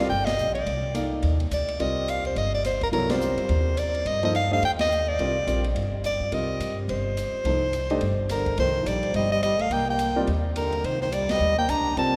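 Spiritual and intense, this fast modal jazz excerpt swings at 212 BPM in C dorian over a Cm9 chord, steeped in a long, wet cathedral reverb. A clear, breathy soprano saxophone sits up front with the melody and a light vibrato, backed by an intimate grand piano with audible action noise, a woody pizzicato upright bass and a dark, smooth acoustic drum kit with a punchy kick. At 8.3 s a warm, close-miked trombone joins as a second line with scooped notes and a soft attack, and the band hits accents at 0.2, 3.1, 4.8 and 11.3 s.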